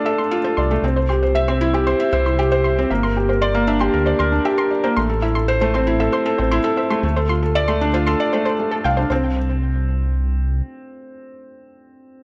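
A straight 4/4 pulse at 116 BPM carries this tender, hopeful piano-and-strings electronica excerpt, where an intimate felt-muted upright piano riff with audible action noise and delay sits up front, a deep, rumbling detuned saw bass with a beating edge anchors the Dm, C, Gm and Am changes, and a warbling, lo-fi, nasal pluck drifts in the background with chorus and delay until just after the harmony falls away at 9.1 s, leaving the bass to stop at 10.6 s and the piano to play alone until 12.2 s under light reverb.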